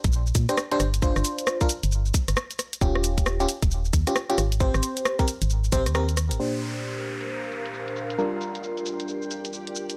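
UK garage in a two-step cut, bouncy and soulful at 134 BPM in Bb mixolydian, with a swung groove where an up-front, overdriven electronic kick and a layered garage kit of hi-hat, rim click and shaker, its hats and percussion darkened by low-pass filtering, carry the rhythm under a hollow, organ-like FM bass that stops at 6.4 seconds. Glassy, bell-like FM electric piano stabs with chorus and delay move through chords from Bb6 to Abmaj7 and on to Gm7, taking a filter sweep in the second half as an electronic downlifter falls in. At 7.0 seconds a cloudy granular pad enters high with slow attack and sidechain pumping, all set in light reverb over a faint mains hum.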